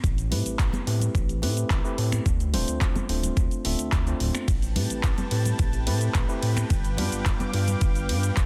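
A dense, heavily limited modern master with little reverb carries this sleek, groovy nu-disco excerpt, built on a gritty, thumpy overdriven electronic kick up front, an overdriven house drum kit of hi-hat, ride, handclaps, finger snaps and cabasa, and a glossy, retro chorused synth bass with tube saturation and a plucky filter. From 0.3 seconds a clean tine electric piano with tape echo and sidechain pumping joins bright, hard-hand congas in the background, circling Am9, Dm7 and G7. At 4.5 seconds a thick, warbling vintage unison pad with chorus, sidechain pumping and a slow attack enters on sustained chords.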